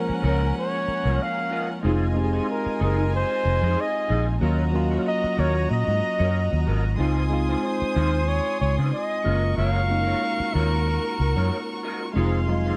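A breathy, whispered flugelhorn carries the melody in this lush, smooth soul excerpt, over a foam-muted, round electric bass sitting up front, a worn, slightly out-of-tune tine electric piano drenched in chorus, a sul tasto chamber violin section with tape echo shaping a soft-edged second line, and a dark, slightly broken-up guitar riff with ensemble chorus, heard within small room ambience.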